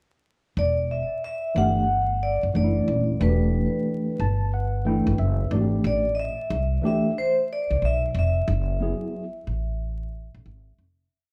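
A ringing, metallic vibraphone, struck with medium hard mallets and carrying a slow motor vibrato and tape echo, leads this short, nocturnal and mellow jazz-hop piece with a motif-based melody built in sentence phrases. It enters at 0.6 s alongside a woody, thumpy upright bass, played pizzicato on steel strings, whose syncopated line sits up front and slips in chromatic approach notes. A worn, slightly out-of-tune tine electric piano, lightly overdriven through its built-in speakers, adds free comping in quartal voicings with grace notes, and breaks into a short fill at 3.9 s. The harmony moves from Em11 to Am11 and then F#m11 in E minor, tuned to A4 = 438 Hz, at 91 BPM in 4/4 with a 65% swing on the sixteenths. The band plays live in one room with a moderate large studio reverb and a layer of vinyl crackle, and the piece fades out from 8.5 s.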